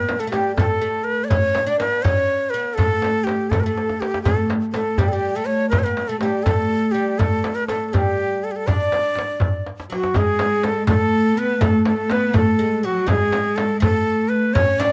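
Close, detailed microphones and a light reverb frame this passionate Persian modal ensemble piece in a straight 6/8, cut from a longer performance. A breathy, reedy ney carries the melody up front with vibrato, over a woody, plectrum-plucked fretless oud on the second line and a tight, saturated tombak and small, band-limited frame drum struck with hard hands. Drum fills land around 3.8 and 9.6 seconds, and at 9.9 seconds a dark, smooth bowed cello joins the second line with expressive portamento as the music moves into a new section.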